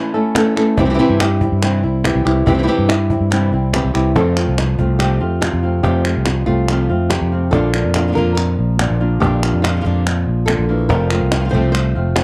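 Flamenco excerpt at 142 BPM in a straight 4/4, passionate and fiery, with a fingerpicked flamenco guitar up front playing stabs and a second, bright fresh-stringed fingerpicked guitar carrying the melody over chords moving from A and C to F and Bb. A growly, amped fretless electric bass sits up front from 0.8 seconds, while a woody cajon with faint snares and soft hands stays in the background beside crisp palmas hand claps. The sound is dry and close, like a 1970s studio recording, and the section change at 4.2 seconds lands on F.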